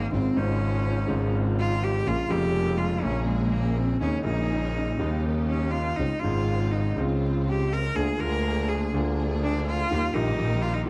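In a rubato 4/4 at 123 BPM, this tense, dramatic tango fragment features a bright, bowed cello soloing throughout its 10.9 seconds, with light vibrato and a slapback echo. A woody upright piano with long sustain carries the accompaniment, a biting bowed double bass holds the low end, and a dark, lush symphonic string section adds stabs in the background, moving from Dbmaj7/Ab through Bbm7 and Eb7 toward Eb. The sound is dry and close, like a 1970s studio recording, with light reverb and vinyl crackle.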